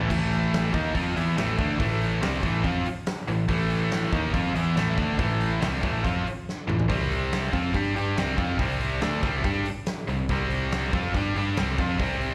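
A 141 BPM straight 4/4 heavy metal riff in A minor, aggressive and heavy, pairs a tight, bright distorted guitar up front with a high-gain guitar further back, both picked with slapback echo, over a dark, round overdriven bass and a big acoustic kit with punchy kick, fat snare and bright cymbals, a drum fill at 6.5 seconds leading into the chord change from Am to C5 at 6.9 seconds in this live club excerpt heard through the venue's PA.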